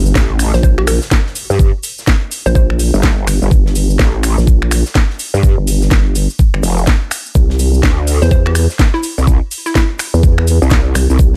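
A nasal, resonant vowel-sweep wobble bass sits up front in this aggressive, bouncy bass house excerpt, its formant filter and tube saturation giving a dark, chorused wobble that pumps against the kick from the first moment. Alongside it a growling, detuned unison growl bass adds overdriven grit, and the two basses share the low end over a G dorian groove at 125 BPM in 4/4 with a 61% swing on the sixteenths. A knocking electronic kick drum leads the beat, working with a tape-toned garage kit of cracking snare, metallic hats, cabasa and finger snaps, while a very quiet acoustic shaker and snare layer adds small-room texture. A hollow square-wave pluck with a short decay, chorus and digital delay appears twice, from 0.5 s and again at 8.2 s, and a faint electronic impact marks the opening. The harmony holds on G minor before moving to C at 7.4 s, all set in a small room ambience.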